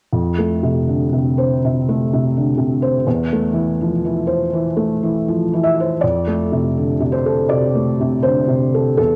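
A felt-muted upright piano plays alone from 0.1 s, soft and intimate, sitting up front with a cassette-tape coloring and tuned to A4 = 435 Hz, in a melancholic, reflective neoclassical minimalist piece that moves in 4/4 with uneven, rubato timing. Its harmony drifts from F6 to Am/E and returns to F6 at 6.0 s, where a new section begins that carries through to 9.2 s. A wet spring reverb and small-room ambience give this home cassette recording a close, mellow air, and the passage is cut from a longer piece.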